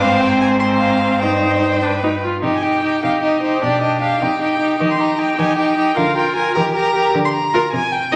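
A reverberant recital-hall sound with a 1.5-second decay surrounds this short cut from a quick, cheerful classical-period movement for string quartet in C minor, moving in a lively 6/8 at 102 BPM to the dotted quarter. One violin carries the melody with smooth, even vibrato, while a second, clear and focused violin plays a supporting line beneath it. The viola, close and up front with a soft attack and expressive portamento, stands out slightly in its accompaniment above a rich, distant cello bass, and from 2.4 seconds the harmony moves from C minor toward E-flat and B-flat chords for the rest of the passage.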